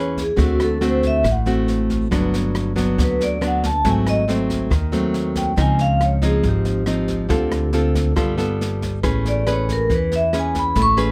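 A ringing, dark-toned vibraphone with medium hard mallets and a medium motor vibrato takes a smooth solo melody through this breezy, sunny bossa nova excerpt at 139 BPM, over up-front fingerpicked nylon-string guitar, woody pizzicato upright bass and a brushed jazz kit with a boomy kick and rim clicks that joins at 0.2 s, all in light reverb as the chords move from D7 through Gmaj7, G#7b9 and C#maj9 to Amaj9.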